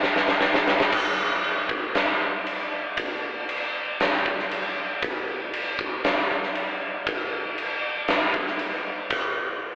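A rock excerpt at 117 BPM in 4/4 with a cathartic, brooding mood, carried by a huge arena drum kit of crash cymbal, kick and snare. It opens with a drum fill that runs to 0.9 seconds, then settles into a straight groove through to 9.1 seconds, the kick punchy, the snare medium-tuned and the cymbals bright. The kit sits up front with light reverb and a hall character, captured as a band playing live in one room, though the whole recording is filtered to a telephone sound.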